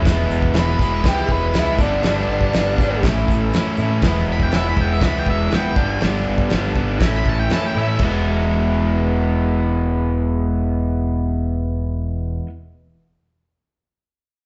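A rowdy, swaggering garage rock passage, cut from a longer piece, opens on a double-tracked, overdriven guitar riff up front and a growling, punchy fingered bass with tube saturation. These are joined at once by a cloth-damped, thuddy drum kit with a fat snare, tight kick and dark cymbals, plus a very quiet, grainy egg shaker. At 121 BPM in straight 4/4 and E major, an octave-fuzz lead guitar takes a dark, distorted solo over E, G and A chords until 8.0 seconds, after which the riff and bass carry on alone to 12.5 seconds, the whole band sounding live in one room with a large studio reverb and a muffled high end.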